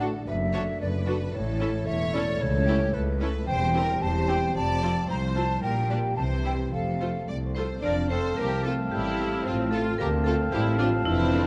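Close, detailed microphones and light reverb frame this cinematic cue, cut from a longer piece. It has a quirky, mischievous mood at 112 BPM in a straight 2/4 and settles into F major from 3.5 s. Two bowed violin sections carry the melody and a second line with a clear, focused vibrato, joined by an airy, hollow silver concert flute that sounds distant, while a lush viola section fills in the accompaniment. Beneath them a dark, roomy French horn section holds sustained chords in the background, a concert harp rings out very quiet fingerpicked arpeggios, and a rich cello section and an intense double bass section share the bass. At 7.5 s a marimba with hard mallets joins the melody with a percussive edge, and from 7.8 s a punchy oboe and a soft-attack clarinet add second lines as the music moves into a new section. The harmony travels from D/F# through A and C/E to F, Gm/Bb and C, then touches F/A before reaching Dm7.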